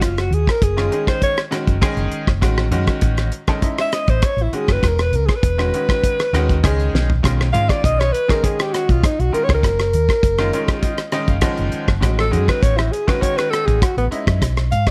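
A vibrato-laden alto saxophone solos up front through this bright, slick electric jazz fusion excerpt at 100 BPM in straight 4/4, its warm jazz tone touched with slapback echo. Beneath it sit a round, punchy hollow-body bass and a damped 70s drum kit with a fat snare and tight kick, while a brilliant, slightly worn grand piano enters at 0.8 s to accompany lush chords such as Amaj7, Emaj9 and F#maj9. A short drum fill lands at 6.9 s and the piano takes a fill at 10.2 s, the mix set in studio reverb with a dark, warm production.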